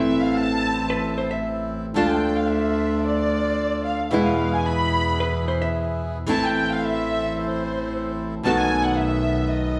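Moving at 111 BPM in 4/4 with a rubato feel, this elegant, playful tango excerpt in A minor is cut from a longer piece and sits in a reverberant recital hall with a 1.5-second decay. A dark, woody violin section plays the featured line throughout, bowed with vibrato and a smooth, lush top, placed up front. Beneath it, an up-front nylon-string guitar is fingerpicked in a classical manner, while a reedy, close-miked bandoneon adds dry, full stabs. A single bowed double bass, clear and earthy with light vibrato and a biting edge, sits distant in the low register. A compressed, clean hollow-body jazz guitar, picked and dark in tone, adds a brief second line at 0.9 seconds and again at 5.2 seconds, as the harmony moves from Am through Dm and E back to Am before closing on B7.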